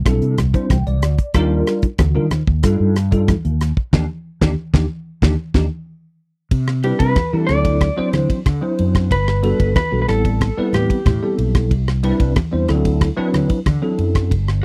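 Electric jazz fusion with a soaring, slick mood, where a round, amped fretless bass with analog chorus and a bell-like, up-front tine electric piano with ensemble chorus ride over a damped 70s drum kit with a fat snare and tight kick, while low-tuned congas sit in the background, a band accent arrives around 3.9 seconds, and a dark, slightly broken-up lead guitar takes the melody from 6.8 to 11.4 seconds, all in a dry, close 1970s-style studio sound cut from a longer piece.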